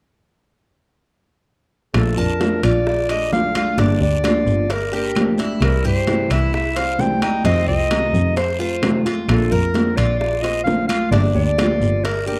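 Relaxed and warm, this Cuban son and guajira passage, cut from a longer piece, sets a clear, classical-style clarinet melody up front beside a bowed double bass that sings with vibrato and portamento. A fingerpicked nylon-string guitar supplies accompaniment, while a picked Cuban tres adds metallic, double-strung arpeggios from 2.2 seconds over chords moving from Bbmaj7 through Gm7, C and F7. Behind them, bright soft-handed congas and tight high-tuned bongos sit distant in a large room, joined by ringing metal-shell timbales, woody claves and a raspy, close guiro, all within a dry, close 1970s-style studio sound with light reverb.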